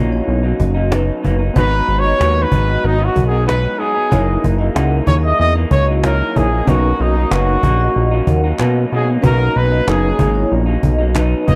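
Lightly reverberant studio ambience frames this hazy, laid-back indie and bedroom pop excerpt in B major at 94 BPM, where a fat, detuned analog bass sits up front under woody cajon, a slightly broken-up lo-fi electric guitar with subtle chorus, very quiet glossy retro synth keys and a metallic, ringing vibraphone in the background with slapback echo, while a breathy, intimate trumpet carries the melody from 1.6 s over Bmaj7, G#m7 and F#13 chords, joined by crisp group handclaps at 7.3 s.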